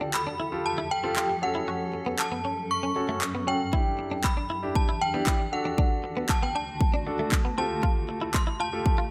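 This bittersweet, energetic dance-pop excerpt opens at once with a ringing, inharmonic synth chime carrying the melody up front, thickened by ensemble chorus and delay. Around it, a warm concert grand piano plays accompaniment with audible action noise and long sustain, pulsing under sidechain pumping, while a granular cloud pad holds blurred, evolving sustained chords that also breathe with the sidechain. A clean, direct-recorded electric guitar adds a bright, picked riff coated in lush chorus. From 0.1 seconds, a layered house drum kit drives the straight 117 BPM groove in 4/4 with a punchy kick and handclaps placed prominently in the mix. The harmony moves from Fadd9 through F#m, Em7 and D before returning to Fadd9, all set in a digital ambience.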